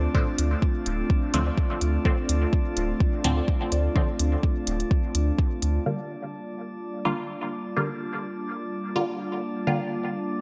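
Hazy and meditative, this dub techno passage, cut from a longer piece, moves at 126 BPM in G minor with a gentle 16th-note swing. An airy, breathy pad holds sustained chords throughout with a slow attack and chorus, while a glassy texture of drifting overtones floats above it, carrying its own built-in reverb. A filtered dub chord stab sits up front, muted yet bright, carrying a phaser, a cassette-tape grain and dub echo until 9.8 seconds. A second, very quiet stab plays a short riff between 1.5 and 3.8 seconds. A round sine sub bass, a deep electronic kick and smooth hi-hats under a low-pass filter drive the first half and drop away by about 5.8 seconds, leaving the pad, texture and stab to carry the move from Dm7 to Gm7. Sidechain pumping breathes through the pad, bass, texture and main stab, all set in light reverb.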